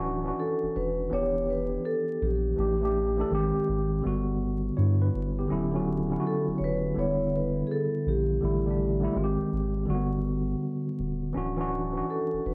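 A metallic, ringing vibraphone played with soft mallets carries the melody from 0.4 s with a slow motor vibrato, over a clean, mellow tine electric piano and a deep, round dub sub bass. The piece is a hazy, melancholic swung hip hop cut from a longer work, cycling through Dmaj9, Em7, A7sus4, G#maj7 and Gmaj7, and its whole mix is soaked in a wet small-room reverb, worn warbling cassette tape and vinyl crackle.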